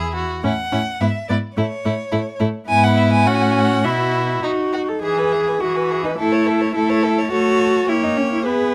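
Heard through close, detailed microphones with a light touch of reverb, this excerpt from a quick, graceful and spirited classical-period movement for string quartet sits in E major at 105 BPM in 2/4, shaped with a flexible rubato. The cello is up front, warm and soft in attack, singing expressively with vibrato and portamento across a range that spans from the low bass up to A4. Beneath the tune, the viola supplies a focused, smooth-topped accompaniment, while a clear, even second violin holds an inner line with vibrato. From 0.4 s the lead violin carries the melody high on its strings, its tone full and concentrated. The harmony moves from A and E through F-sharp minor and a suspended B toward a diminished chord, then a second phrase begins at 5.0 s on E and closes on a tense diminished-seventh sonority as the passage is cut off.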